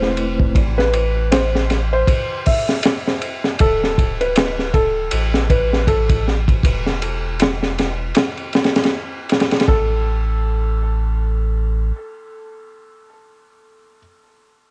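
Hypnotic and brooding, this trip hop excerpt moves at 79 BPM in 4/4 with a swung sixteenth-note feel. A felt-muted upright piano carries the melody from start to 14.0 seconds, its mellow, intimate tone dusted with vintage 12-bit sampler grit, cassette tape and tape echo, with the action noise of the instrument audible. A vibraphone with medium mallets sounds only briefly at the opening, metallic and ringing with tremolo and tape echo. Underneath, a deep, round dub sub bass sits up front with transformer saturation until 11.9 seconds, while a crunchy breakbeat kit with dark cymbals, a high-tuned snare and a punchy kick plays through 9.8 seconds, its gritty, rolled-off sound colored by cassette tape. The harmony moves from Amadd9 to D5 before dropping out, and the whole excerpt has the dry, close feel of a home cassette recording with little reverb.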